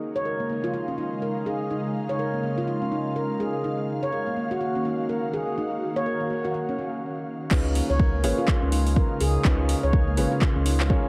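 Warm and earthy, this afro house excerpt opens with an ethereal, detuned pad holding chorused chords while an up-front handpan of ringing nitrided steel plays meditative arpeggios, both pumping under sidechain and the handpan trailing dub echo. At 7.5 seconds the drop arrives: an overdriven, deep electronic kick sits up front beside a round sine sub bass, a deep house kit adds metallic hats, handclaps and crash, and a felt-muted upright piano places soft, vintage stabs in the background. The mix is echo-heavy, set in a moderate spring reverb with a gentle 16th-note swing.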